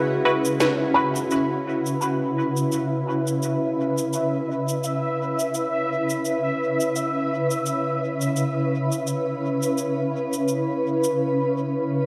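A granular cloud pad sits up front in this hazy, deep ambient dub excerpt, its blurred, evolving sine tone holding sustained chords from C#3 to B4 for the full 12.1 seconds, moving from Bsus4 to C#m7 at 1.3 seconds. The tempo is 85 BPM in 4/4 with a swung sixteenth feel, in C# minor. A felt-muted upright piano plays soft arpeggios on B5 in the background during the opening, its boxy, intimate sound carrying audible action noise, 12-bit sampler grit and dub echo. A filtered dub chord stab of detuned sawtooth and square waves pops in briefly with a fast filter pluck, phaser and dub echo, while electronic cabasa and a woody, overdriven snare drum, re-recorded in a large room, run from 0.5 to 11.2 seconds with dub echo. From 1.3 seconds a bubbling stepped-filter texture on E5 adds resonant, randomly stepping sawtooth tones with chorus and reverb, all within a moderate echo chamber reverb.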